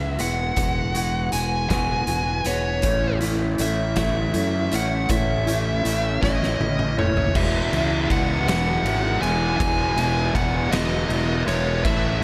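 A big arena sound, washed in a lush hall reverb, frames this bittersweet, anthemic stretch of quiet-loud alternative rock, cut from a longer piece and moving in 6/8. A fingerpicked steel-string acoustic with a woody, boxy parlour tone spins arpeggios beneath an up-front lead guitar whose dark, overdriven melody carries slapback echo and analog delay. A round, fuzzed-out fingered bass sits forward in the mix, while an oversized, low-tuned acoustic kit pumps with a gritty, saturated sound, a fat snare, boomy kick and dark cymbals. A raw, lo-fi garage guitar joins in the background with an overdriven riff at 2.8 seconds as the harmony shifts from Eadd9 to A. During a drum fill that begins at 6.2 seconds, a thick, bright fuzz guitar adds a distorted riff at 7.3 seconds, and the chords return to Eadd9.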